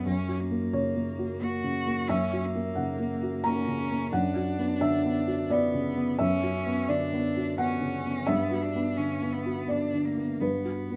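A felt-muted upright piano accompanies this melancholic, reflective neoclassical fragment, its soft, dark, intimate tone sitting close and mellow across a broad range in B harmonic minor. Over it a single bowed cello carries a smooth, even second line with clear vibrato, both parts up front. The music moves in a rubato 3/4 at about 87 BPM through F#, Bmadd9/F# and Gmaj7 chords, with a moderate large-studio reverb that lingers around 1.3 seconds.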